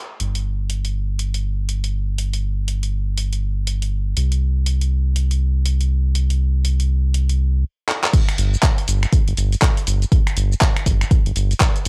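Deep house at 121 BPM with a 16th-note swing, moody and deep: a round, dark analog bass with sidechain pumping sits up front alongside a tape-warm drum kit of hi-hat, shaker, finger snaps, handclaps and crash cymbal, all dry and gritty with transformer saturation, until a brief stop at 7.6 seconds and a drum fill give way to a drop at 8.1 seconds where a deep, layered electronic kick drum comes in up front.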